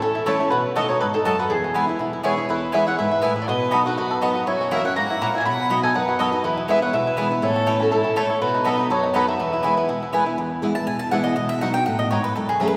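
A lively, driving bluegrass excerpt at 243 BPM in E major opens with twangy, fingerpicked banjo and a woody mandolin melody over an up-front picked steel-string acoustic guitar with audible finger squeak, while a bright second mandolin adds stabs from 0.3 s and a clear, earthy fiddle with light vibrato plays a distant second line from 2.2 s, the whole band heard in a wet church reverb, before a mandolin solo begins at 10.4 s.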